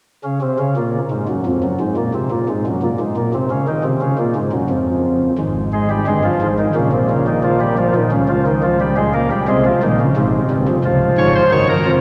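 This is a classical, baroque-style four-part fugue for pipe organ, taken from a longer piece and carrying a lively, joyful mood at 88 BPM in a straight 4/4. A single pipe organ plays solo on a cornet stop, entering at 0.2 s with a nasal, baroque-voiced tone, an audible chiff at the start of each note and a tremulant. Its part spans a range from Db1 up to Db5, and the organ sits up front in the mix. It rings out in a wet cathedral space with a long 6.0-second reverb tail that lets each line bloom and overlap. After an unharmonized opening passage, the harmony settles from 5.4 s through Ab5, Bbm, Eb7/Db and Ab before landing on Db.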